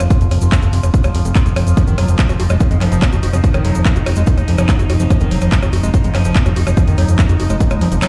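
A fat, detuned analog bass sits up front alongside a heavy, tape-warm electronic kick driving this hypnotic psychedelic trance excerpt at 144 BPM, with a punchy techno kit of handclaps, hi-hat, snare and blips, a grainy cabasa in the background, a bright overtone-sweeping drone with chorus, 12-bit grit and sidechain pumping sustaining an F5 chord, a squelchy overdriven acid bass riff with tape echo entering at 1.8 seconds, and a very quiet, juicy resonant blip pluck with phaser appearing from 2.4 to 3.9 seconds, all heard as if played on a big sound system in a bare room.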